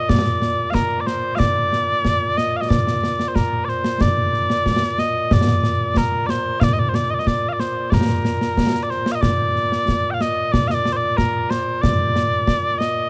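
Mellow small bagpipes carry the melody from the very start, their sweet, continuous tone shaded with vibrato and placed up front as the solo voice. This is Scottish traditional pipe music in a straight 4/4, proud and ceremonial in mood. A concert snare drum and concert bass drum accompany the pipes from 0.1 seconds, sounding acoustic and close, along with dark cymbals. The short passage, cut from a longer piece, states the same section twice, the repeat arriving at 9.2 seconds. Light reverb gives the whole a gentle sense of space.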